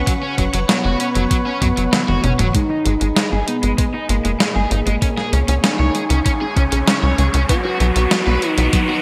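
Over a straight 4/4 pulse at 97 BPM, a thumpy, tape-warmed electronic kick and a clean 12-bit drum machine with an up-front snare, hi-hat and toms bathed in gated reverb drive this nostalgic, nocturnal synthwave fragment in G# minor. A tight, punchy sequencer bass, saturated and sitting up front, pumps against the sidechain. A lush string machine carries sustained chords through phaser and ensemble chorus, while a soft, round, octave-layered synth lead sings the melody with vibrato, chorus and digital delay. A crunchy overdriven guitar plays a picked riff through analog chorus, a low-pass filter and delay. After a drum fill ends at 2.5 seconds, the harmony moves from F#sus4 to G#m, a very quiet, warbling, dusty pluck adds arpeggios, and filter sweeps begin on both the strings and the guitar. A background riser enters at 5.0 seconds under bright 1980s-style digital production with a lush hall reverb.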